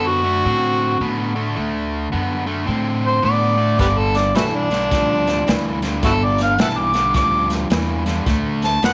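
An up-front, amplified harmonica leads this soulful, gritty electric blues shuffle at 107 BPM in D mixolydian, its overdriven, jazz-style solo marked by light vibrato, tongue slaps and scooped notes. Beneath it, a bright, overdriven stack guitar picks a riff while a woody pizzicato upright bass holds the low end, and a saturated breakbeat kit with a tight kick and rolled-off top enters at 3.8 seconds as the chords move from D6 to G6 and back to D6 at 8.3 seconds. A light reverb and small room ambience surround this excerpt cut from a longer piece.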